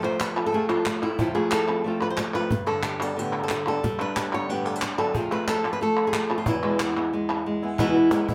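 A short, mournful and intense flamenco excerpt opens at 0.0 seconds with two fingerpicked acoustic guitars and crisp palmas hand claps, moving at a brisk 182 BPM in a straight 4/4. The lead guitar carries the melody up front, its fresh strings ringing bright across a range from E2 to C#5, with audible finger squeaks. Beneath it, the second guitar plays boxy stabs that sit lower in the mix, while a snappy cajon with snares joins at 0.2 seconds. The harmony moves from F to Gadd9, back to F and then to E, giving the phrase its tense, dark pull. The palmas sound distant, as if in a large room, and drop out at 7.5 seconds, while a moderate studio ambience frames the guitars and the live-room cajon.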